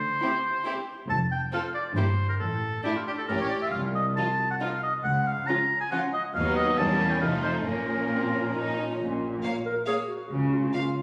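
Cinematic, playful film cue at 137 BPM in 3/4, with a whimsical, magical and sneaky character that settles into Bb minor from 3.7 s. A clear solo oboe sits up front with light vibrato, carrying a second line until 8.7 s, while a dark, soft-attacked clarinet enters at 8.5 s with a second line near the close. Underneath, a distant, expressive cello section and a smooth, even double bass section hold the bass from the start, while a rich violin section carries the melody with expressive vibrato. A second violin section plays sul tasto with a soft, intimate touch, and a lush viola section fills in accompaniment in the background. The harmony drifts through chromatic colour, including an Edim7 and F7, before landing on Bb minor, and the whole sits in a wet scoring-stage reverb, heard as if captured on a phone in the room, in a short cut from a longer piece.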